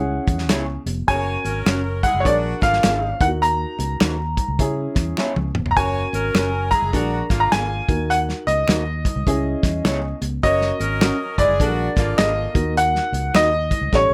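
At 103 BPM in 4/4 with a swung eighth-note feel, this uptempo 1960s-style soul excerpt drives forward with an urgent energy, cycling through C#m, F#, A#7 and D#m. A bright, brilliant concert grand piano carries the melody up front, while a dark, woody upright piano sits beneath it as mellow, boxy accompaniment. A foam-muted fingered electric bass gives a round, punchy low end, and a soul drum kit with a tight kick and rolled-off top enters at 0.3 seconds, joined by very quiet, high-tuned congas that ring faintly in the mix. An electric guitar through a small old amp adds slightly broken-up, lo-fi stabs washed in lush chorus, alongside finger snaps set in the background, and an edgy, close-miked saxophone section with vibrato plays a second line from 1.1 to 12.5 seconds. Drum fills punctuate the groove around 5.2 seconds and again near the close, all framed by a light reverb.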